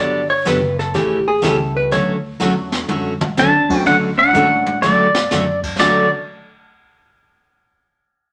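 Cheerful, playful western swing country, cut from a longer piece, opens with a dark, clean hollow-body jazz guitar solo over a bright, full-bodied picked acoustic guitar and a woody, thumpy pizzicato upright bass, with an airy brushed drum kit adding fills, a jangly, detuned honky-tonk piano sitting in the background from 1.4 seconds, and a twangy pedal steel guitar with volume swells taking the melody up front from 3.4 seconds, all in a wet studio reverb.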